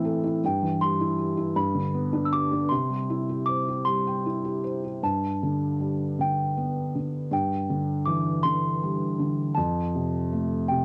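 Swaying in a rubato 6/8 at about 53 dotted-quarter beats per minute, this sleepy, gentle lullaby in C major, tuned slightly low to A4 = 438 Hz, opens with a felt-muted upright piano that sits up front with a thick, muffled tone, audible action noise and a cassette-tape colour. At 0.5 s a small celesta enters with a delicate, bell-like melody high above, sweet and smooth, while the piano moves from C/G through G and C before a second section at 5.0 s turns to G, Cadd9/G and finally F. Light reverb and the intimate feel of a home cassette recording add to this short children's excerpt cut from a longer piece.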